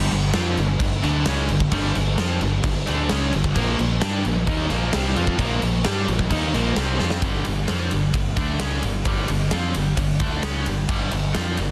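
A high-gain distorted guitar and an overdriven semi-hollow guitar open together on a heavy, aggressive hard rock riff in straight 4/4, with a growly fingered electric bass underneath and a huge arena drum kit joining almost at once. The drums sit up front with a punchy kick, medium-tuned snare, bright cymbals and a pumping hall sound, driving crash, ride, snare and kick hits. The distorted guitar is double-tracked, scooped and bright, while the semi-hollow guitar adds a warm, hollow-body tone from the background. The riff moves between G5 and Bb5 power chords, and a drum fill at 7.0 seconds leads into a new section at 7.2 seconds, where the semi-hollow guitar drops out and the distorted guitar, bass and drums carry on. The whole cut sits in light reverb with a dense, heavily limited modern master and audible lossy compression artefacts.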